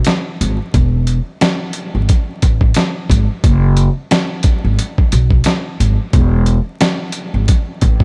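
Boom-bap hip-hop with a warm, soulful mood, this excerpt rides a relaxed 4/4 groove with a gentle swing on the sixteenths. A dusty, sampler-style drum kit opens the clip, its hi-hat, thumpy kick and medium-tuned snare sounding compressed and gritty, pushed through overdrive and re-recorded in a small room for an up-front, lived-in feel. At 0.4 seconds a pizzicato upright bass joins, its gut strings giving a woody, warm, thumpy tone that sits low and close in the mix. The two parts carry the whole passage together until it ends at 8.0 seconds. Light reverb and a layer of vinyl crackle wrap the sound in an old-record patina.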